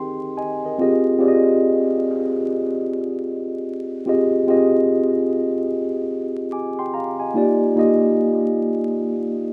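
Nostalgic and melancholic, this hip hop fragment drifts at 73 BPM in 4/4 with a swung sixteenth-note feel in F dorian, cut from a longer piece. A mellow tine electric piano plays alone and up front for the full 9.5 seconds, its clean tone colored by cassette tape, a low-pass filter and analog delay as it moves from Abmaj7/Eb to Fm9 and settles on Ebmaj9 at 7.3 seconds. Vinyl crackle and a wet, short studio reverb give the rough home-demo mix a dusty, intimate character.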